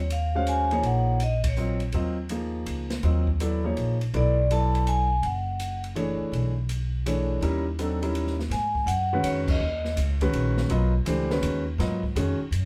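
Woody, thumpy pizzicato upright bass and a ringing, metallic vibraphone played with medium hard mallets and the motor off open this spiritual, hypnotic modal jazz excerpt, a swung waltz at 164 BPM. A concert grand piano with a natural tone and deep low end comps up front over an acoustic kit with dark cymbals, a medium-tuned snare and a boomy kick, while the vibraphone plays brief melodic phrases over Ebm11 and Bm11 harmony. At 8.5 seconds the music settles into G# dorian on G#m11, and the band hits a shared accent at 9.4 seconds, all in a moderate, live-sounding studio room.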